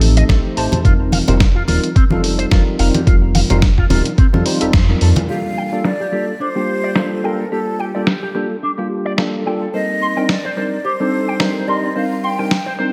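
Swung sixteenths drive this cosmic, sleek nu-disco excerpt, where a thumpy, up-front electronic kick, a gritty sampler-style soul kit of filtered hi-hat and snare, distant congas and a dark, glossy chorused synth bass open alongside a pumping, chorused tine electric piano and a twangy, envelope-filtered guitar riff; after a band accent, the kick, bass and congas fall away by 5.3 s, when a breathy, mellow flute takes the melody over filter sweeps on the drums and guitar in a dreamy, reverb-soaked mix.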